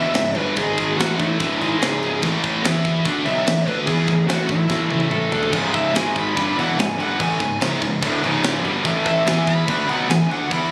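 Dark and relentless, this heavy metal passage at 145 BPM, cut from a longer piece, sets a dark-toned, high-gain lead guitar solo with tape echo over a double-tracked heavy riff guitar, a bright scooped rhythm guitar, a round fuzz-driven picked bass and a tight, big-room drum kit with bright cymbals, whose fill at 4.7 seconds ushers in an added tight distorted guitar at 5.5 seconds, all moving through C#m, G#5, A5 and E5 in light reverb with the roomy feel of a phone recording.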